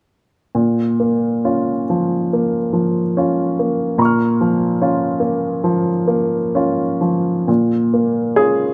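A woody, polished upright piano enters alone at 0.5 s, sitting up front with a short sustain as it opens on B-flat minor in this brief, intimate fragment of neoclassical minimalist piano. The rubato playing drifts between roughly 62 and 73 BPM in 4/4, and its melancholic mood is framed by a moderate recital hall reverb. A new passage begins at 7.5 s before the fragment breaks off at 8.7 s, cut from a longer piece.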